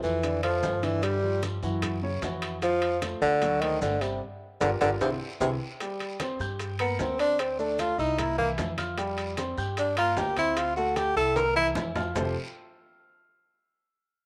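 A close, up-front tenor saxophone carries the melody with vibrato, soft attacks and scooped notes, breaking into a solo at 5.8 seconds, in this sunny, danceable Afro-Cuban jazz excerpt at 151 BPM in F major. Beneath it, a dark, smooth vintage baby grand piano with long sustain and a woody pizzicato upright bass on steel strings provide the harmony and low end. Ringing, saturated metal-shell timbales join a percussion section of bright low-tuned congas, tight high-tuned bongos, a raspy distant guiro and grainy maracas, with a drum fill and band accent from 4.2 seconds, all set in a moderate spring reverb.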